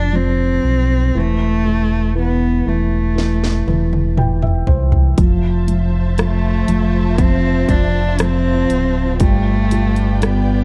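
A rich, focused cello carries the melody up front with vibrato in this heartfelt, hopeful pop ballad excerpt at 60 BPM in C major. It sits over a mellow felt-muted upright piano with audible action noise and a deep sine sub bass doubled at the octave. A punchy, layered electronic house drum kit enters at 3.2 s with a fill, joined shortly by a piano fill, and at 5.2 s a dark, lush studio string section, bowed sul tasto, adds sustained chords as the harmony moves from Fmaj7 to G7, all set in a small room with a dark, warm production.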